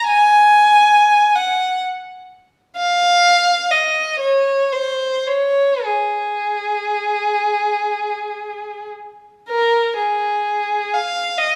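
A single bowed violin carries this brief classical excerpt, its rich, distant tone placed up front and colored by vibrato and gliding portamento. The mood is yearning and lonely, unfolding in a free, rubato 6/8 at a slow 25-47 BPM counted in dotted quarters, with the instrument tuned to A4 = 441 Hz. The solo line moves between Ab4 and Ab5 with expressive phrasing. A reverberant stone room, with a 1.3-second decay, surrounds the player and lends the sound a sense of space. The opening passage runs to 9.5 seconds before a new section begins and carries the music to its end at 11.6 seconds.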